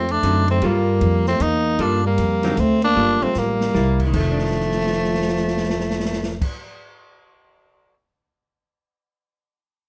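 Swung eighths in a lilting triple metre drive this relaxed small-group jazz fragment, where a raspy, growling tenor saxophone carries the up-front melody over a dark trombone second line, clean hollow-body archtop guitar accompaniment and woody, thumpy pizzicato upright bass, while an open drum kit with dusky cymbals and a boomy kick adds fills from 3.0 s and 4.3 s and plays on alone until 7.9 s in a moderate studio reverb.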